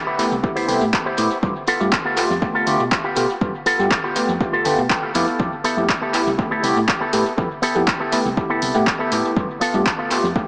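An envelope-filtered electric guitar opens this joyful, funky excerpt of filtered disco house at 121 BPM in G mixolydian, its dark, up-front riff roughened by vintage 12-bit sampler grit and dub echo. It is joined almost at once by a barky, overdriven tine electric piano through a combo amp with phaser, a round, punchy fingered bass, a tape-toned analog drum machine with handclaps and hi-hat, very quiet maracas, and a layered, overdriven electronic kick from 0.4 seconds, with sidechain pumping and low-pass filtering shaping the guitar, piano and bass. The chords move between a rootless Fmaj9#11 and G9, a clean electric guitar fill slips in at 4.7 seconds, and the echo-heavy mix carries spring reverb and a small-speaker sound.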